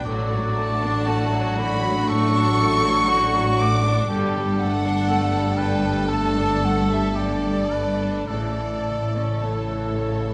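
A lush, moving film score opens with nearly the whole orchestra already sounding, bittersweet and unhurried at roughly 52-60 BPM in a rubato 4/4. A close, vibrato-laden violin section carries the melody, while a second violin line with a soft attack sits higher alongside an airy, hollow concert flute and a distant, roomy cor anglais. Beneath them, violas stay smooth and even in the background, a dark French horn section holds tight sustained chords, and a ringing, fingerpicked concert harp spreads arpeggios across its range. Warm double basses anchor the bass with cellos, which enter at 0.1 s with expressive portamento, as the harmony moves from D over A to Gsus2 and on to A. A mellow clarinet slips in at 9.4 s before the cut at 10.3 s, and a moderate scoring-stage reverb surrounds the ensemble.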